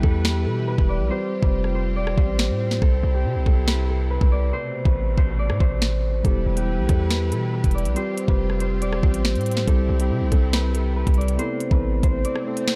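A half-time drill groove drives this cold, dark hip hop excerpt, with an electronic kit up front: a knocking kick, a sharp snare, crisp hi-hats, rim clicks and finger snaps. Also up front, a punchy, heavy 808-style bass with a fast attack and decaying tail runs until 12.2 seconds, while a thumb-plucked Celtic harp carries a ringing, filtered melody through a digital delay. A mellow tine electric piano, heard through its built-in speakers, adds filtered accompaniment that pauses between 2.8 and 6.2 seconds, a clear symphonic string section holds smooth bowed chords with light vibrato, and an electronic swell sits in the background at the close of this dark production with little reverb.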